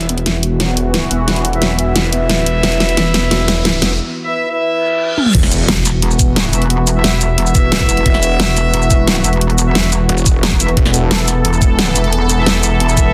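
A felt-muted upright piano opens this excerpt of dark technical drum and bass with soft, mellow arpeggios set in the background under tape echo and a low-pass filter, while a sweeping resonant pad holds airy, evolving chords and a snarling distorted saw bass growls on a low E. A layered dubstep drum kit with a huge snare drives the build-up with drum fills, a background riser climbs, and a clear brass ensemble enters at 1.1 seconds with soft-attack stabs, its filter sweeping across the build. After a brief break, a reverse cymbal leads into the drop at 5.3 seconds, where a knocking electronic kick drum and a heavy, pulsing pluck wobble bass arrive with an impact. The saw bass drops out for a stretch and returns, its aggressive, saturated tone sitting up front beside the wobble bass while the pad and brass stabs keep their futuristic, mechanical sheen. Light reverb surrounds a dense, heavily limited master, with sidechain pumping on the pad, piano and saw bass.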